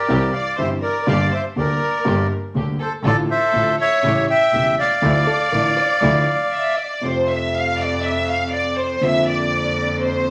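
Melancholic and dramatic, this rubato tango excerpt at 121 BPM in D minor sets a reedy, up-front bandoneon melody against a lush violin section line, a boxy piano with deep bass, faint gut-string stabs, a focused bowed double bass and a dark, clean hollow-body jazz guitar heard briefly in the background, all under vinyl crackle and a wet studio reverb, before a stop at 6.5 seconds gives way to a violin section solo over piano and double bass in F major from 7.0 seconds.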